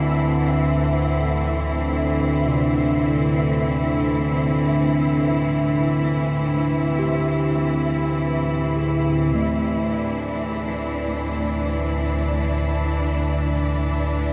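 Ominous and vast, this free-time dark ambient drone in Dsus2 sets a nasal, chorused analog synth drone with slowly shifting pulse-width tone up front beside a bright, distant cello section holding bowed chords with light vibrato, while a grainy, flickering texture murmurs in the background until 9.4 s, a bronze gamelan-type metallophone enters at 2.5 s with ringing, delayed arpeggios struck by wooden mallets, a filter sweep moves over the drone from 9.3 s, and a huge, wet ambient reverb surrounds this excerpt of a longer piece.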